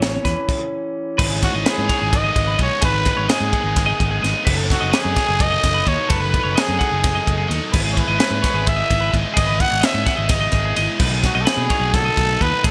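A raspy, growling trumpet carries the melody up front from 1.4 seconds, riding a playful, intricate math rock and midwest emo groove in 7/8 at 257 BPM, with chords moving from B9sus4 through G#m, B7/F# and Emaj7/G# to B7. A bright, twangy twelve-string electric guitar with subtle chorus spins arpeggios over a punchy fingered bass and a crisp fusion drum kit with a high-tuned snare, while a lo-fi, slightly broken-up guitar through a small old amp plays only until 2.1 seconds and a biting, double-tracked overdriven guitar riff enters at 1.2 seconds. A brief stop from 0.5 to 1.2 seconds sets up the main section, and the whole fragment, cut from a longer piece, has light reverb, small room ambience and a bright 1980s-style digital production.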